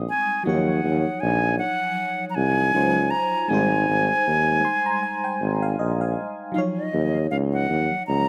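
Sweet and tender, this short lovers rock reggae passage moves at 79 BPM in 4/4 with a swung sixteenth-note feel, drifting from Ebm9 to Abmaj7 and back to Ebm9. A punchy, vintage-toned tuba holds the bass up front, while a mellow FM electric piano with tremolo and phaser supplies accompaniment and adds a fill from 4.3 to 6.5 seconds. Above them, a breathy silver concert flute carries the close-miked, tongued, expressive melody in straight tone with tape echo, heard within a light small-room reverb.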